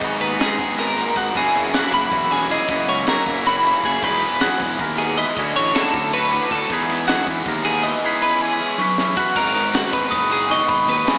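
A bright, compressed twelve-string electric guitar sits up front, its picked arpeggios glinting through a digital delay in this intricate, wistful excerpt of math rock and midwest emo, moving at 314 BPM in eighths through a straight 7/8. Beneath it, a crunchy, double-tracked overdriven guitar plays a riff in the background, coloured by spring reverb and slapback echo, while a twangy, clean guitar offers dark, fingered accompaniment until 9.4 seconds. A round, fuzz-laden fingered bass with overdrive anchors the low end, and a crisp fusion drum kit with a punchy kick, high-tuned snare, dark cymbals and toms adds an airy, polished studio feel, capped by a fill from 8.8 seconds. At that same moment a vintage, band-limited glockenspiel struck with hard plastic mallets enters with a ringing, bell-like melody. Chords drift from G#m9 through F#7sus4, Emaj9, Dmaj9 and C#m9/E before returning to G#m9 as a new section begins, all wrapped in a lush hall reverb that lends an arena-sized sheen alongside a small-speaker quality.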